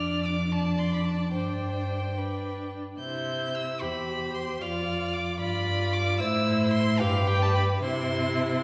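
A wet scoring-stage reverb, like that of a church or concert hall, surrounds this 8.6-second passage cut from a quick, graceful and spirited classical-period string quartet movement in C major and 6/8, taken at 74 BPM in dotted quarters with a flexible rubato. The first violin sings the melody high above with a smooth, even vibrato, while the second violin holds a focused inner line and the viola's bowed accompaniment sits more distant. The rich, up-front cello anchors the bass as the harmony moves from Dm/F through Gsus4, C and G7 to a closing C.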